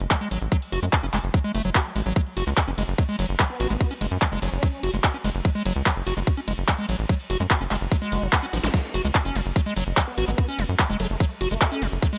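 Driving, hypnotic psychedelic trance at 146 BPM in straight 4/4 and F# minor, built on an overdriven, up-front electronic kick and a layered kit of cracking snare, bright hats, handclaps, ride and crash, with a tight, nasal sawtooth sequencer bass warmed by tube saturation, a squelchy, resonant acid riff pumping through chorus and dub echo, a grainy egg shaker in the background, a detuned formant-filtered wobble bass surfacing between 3.5 and 4.8 seconds and again from 10.1, and a distant swell-and-zap at 8.1 seconds ahead of a drum fill, all set in light digital ambience in this excerpt from a longer piece.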